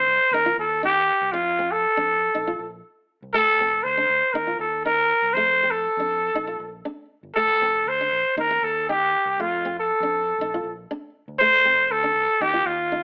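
Heard through a narrow, telephone-like filter with moderate studio reverb, this short cut from a longer highlife guitar band piece is joyful and danceable, moving at 119 BPM in a straight 4/4 around F mixolydian, with chords cycling among Ebsus2, F and Bb. Up front, a raspy, growling trumpet carries the solo melody between F4 and C5 in a jazz style, its scooped notes and vibrato sounding gritty yet distant and roomy. Beneath it, a dark, fingerpicked flamenco guitar supplies accompaniment, and a round, punchy fingered electric bass sits low in the mix, both playing throughout the 13 seconds.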